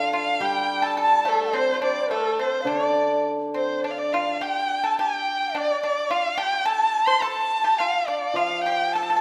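This tender, graceful passage of Chinese traditional chamber music is cut from a longer piece and moves rubato at 105 BPM in 2/4, in D yu mode. Up front, a single warm bowed erhu carries the melody with vibrato and expressive portamento. A reedy large dizi with a buzzing membrane sits distant in the background, a very quiet breathy, hollow shakuhachi adds a chiffy end-blown line, and a mellow, dry pipa played with fingerpicks gives percussive support. Low beneath them, a shimmering hammered dulcimer rings until 4.4 seconds and returns at 8.3 seconds, with the ensemble set in a wet recital hall reverb.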